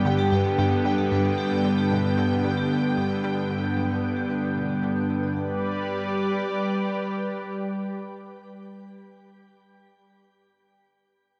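Expansive and luminous, this short cut from a longer piece of ambient, sequencer-driven space music moves at 113 BPM in a straight 4/4, resting on a G major chord. Up front, a lush, thick, sawtooth-and-square unison pad with a slow attack sustains chords with chorus and shimmer reverb. In the background sit a pulsing, tempo-synced triangle texture high in the register, an arpeggiating vibraphone whose metallic, ringing hard-mallet tone carries analog delay and fades out, and a round, detuned analog pluck riff low in the mix. The three background parts drop away by about 5.6 seconds, leaving the pad alone until 9.1 seconds in a dark, warm, lush hall.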